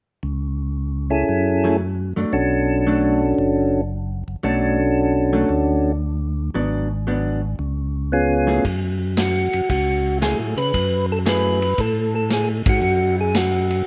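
A mellow, round percussive tonewheel organ carries the melody up front through a slow rotary speaker in this late-night, bluesy soul jazz organ trio, swinging at 114 BPM in F# minor. A second tonewheel organ, full and lightly overdriven with vibrato and key click, holds down the bass, while a dark, clean, compressed hollow-body electric guitar adds picked accompaniment over chords moving from F#m7/C# through Bm7 and G#m7b5 to C#7. A vintage drum kit with shadowy cymbals and a punchy kick joins at 8.6 seconds, and the band hits an accent at 12.6 seconds within a light reverb.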